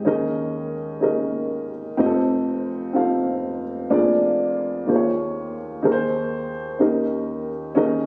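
Reverent and hopeful, this short gospel passage, cut from a longer piece, moves in an unhurried 6/8 on a solo upright piano whose dark, woody, boxy tone sits up front and spans from deep bass notes to the upper middle register. Rich suspended and seventh chords carry the harmony, opening on Eb7sus4 and settling onto Eb7 by 6.8 seconds. The piano rings in a moderate recital hall reverb, with a compressed phone-in-the-room character.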